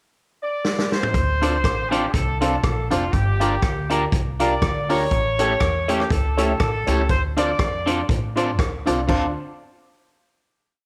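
Driving and mischievous, this short ska piece in D minor swings at 121 BPM as a warm horn section plays a motif-based melody with light vibrato from 0.4 seconds, over a roomy big-band drum kit that opens with a fill before settling into a ska beat with a side-stick backbeat and punchy kick. A dark, woody upright bass walks pizzicato with slides, while a twangy, slightly broken-up electric guitar with phaser and a slightly detuned upright piano with slapback echo both chop on the off-beats. The progression moves through Dm7, Gm7 and A7 in an echo-chamber space before a final chord at 9.1 seconds.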